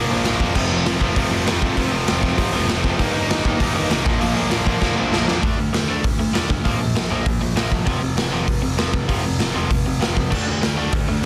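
Punk rock with a rebellious, energetic drive, cut from a longer piece, built on three bright, overdriven electric guitars picking riffs in the background: a compressed one runs throughout, a distorted one stops at 5.4 seconds, and a very quiet double-tracked one drops out with it and returns at 10.3 seconds. A brilliant concert grand piano carries the bass line with deep, open low notes and long sustain, while a raw garage drum kit sits up front, punchy, gritty and saturated in a pumping stone room, its fill leading into the second section at 5.4 seconds. The mix is dense and heavily limited, with little reverb.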